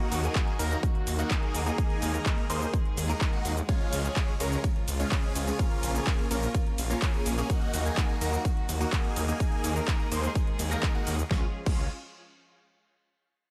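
Triumphant and euphoric, this excerpt from a festival progressive house track at 126 BPM in Db major opens mid-drop, with a huge, bright detuned supersaw lead riffing through a phaser and tape echo over floating, bowed studio strings holding soft sustained chords in the background, a thick, menacing detuned saw bass pumping up front, an overdriven big-room kit of huge snare, handclaps, metallic hats, shaker, ride and crash, and a punchy electronic kick entering at 0.4 seconds, all cycling through Ebm, Absus2/Eb, Db and Bbm in a dry mix.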